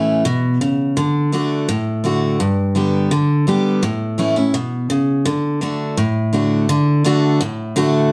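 A bright, full-bodied picked dreadnought steel-string acoustic guitar plays alone and up front through this rustic, driving bluegrass excerpt in D major at 168 BPM in straight 4/4, moving through A, D, G, A and D chords inside a wet studio reverb that places the room further back.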